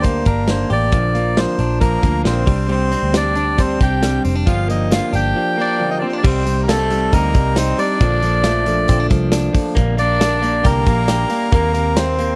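A reedy, breathy melodica carries the melody up front in this nostalgic, youthful jangly indie pop excerpt, over a big rock drum kit with a tight kick and medium-tuned snare, a round, foam-muted vintage picked electric bass, compressed arpeggios from a bright direct-recorded clean electric guitar, and twangy, slightly broken-up accompaniment from an electric guitar through a small old amp in the background; a raspy, growling trumpet second line joins at 1.8 seconds and a jingly tambourine at 2.9 seconds, captured in a dry, close 1970s-style studio sound.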